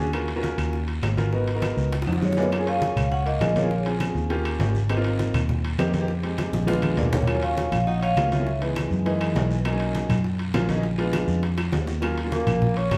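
Heard from further back in a large, reverberant studio, this fiery, driving Afro-Cuban jazz fragment in Eb minor races along at 202 BPM in a straight 4/4. A dark, round picked electric bass sits up front with an amped, foam-muted tone, while a warm concert grand piano with a deep low end supplies the accompanying chords throughout. The percussion bed mixes bright, low-tuned congas in the background, very quiet round bongos, ringing metal-shell timbales with a vintage, band-limited character, woody claves and a raspy guiro. At 2.2 s and again at 7.0 s, a metallic vibraphone with medium mallets carries the melody with a slow motor vibrato, joined by a distant, roomy tenor saxophone playing a warm subtone second line with vibrato and a slapback echo. The saxophone returns briefly at 12.3 s. Drum fills arrive around 1.9, 6.4 and 11.6 s, and the harmony moves through rich extended chords such as Gbmaj9, Bb7b9 and Gb13 before settling back on Ebm7.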